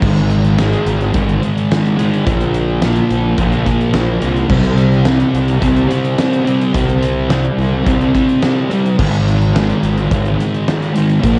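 Shoegaze-leaning rock with a dream pop haze, this brooding fragment from a longer piece moves in a straight 4/4 with a hazy, heavy air. A dark, double-tracked fuzz guitar carries the riff up front, its picked, distorted tone thickened by analog chorus and moving through power chords on Ab, Bb and C. Beneath it, a fingered electric bass adds a round, overdriven growl with transformer saturation, sitting low and punchy under the guitar. An acoustic drum kit with a big-room sound drives the piece with a fat snare, punchy kick, hi-hat and crash cymbal, its sound colored by cassette tape. The whole passage, running about 11.4 seconds, has a light reverb and the dulled top end of a home cassette recording, which softens the fuzz into a murky, lo-fi blur.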